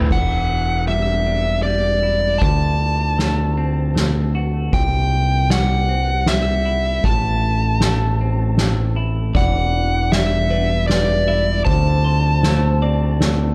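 A dark, warm studio sound with light reverb frames this cinematic, melancholic post-rock excerpt in E minor, moving at 78 BPM in 3/4 through Em7, D7, C and Am. Up front, a smooth overdriven lead guitar carries the high melody over a growling bass with its own grit, while a clean, twangy electric guitar plays arpeggios through analog delay and a distant, roomy drum kit, played with soft mallets, adds a punchy kick. At 9.3 seconds a bright twelve-string electric guitar joins in the background with its own delayed arpeggios.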